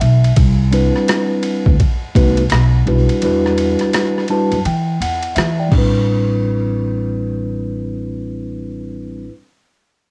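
A gritty, overdriven boom bap sampler-style drum kit with a thumpy kick, compressed, pitched down and re-recorded in a large room, drives this cool, nocturnal jazz-hop excerpt until 5.9 seconds, alongside a woody, warm pizzicato upright bass on gut strings with transformer saturation and a mellow, clean tine electric piano that adds fills at the opening and from 3.9 seconds over chords such as Cmaj9 and Em9, all set in light reverb on a home cassette recording.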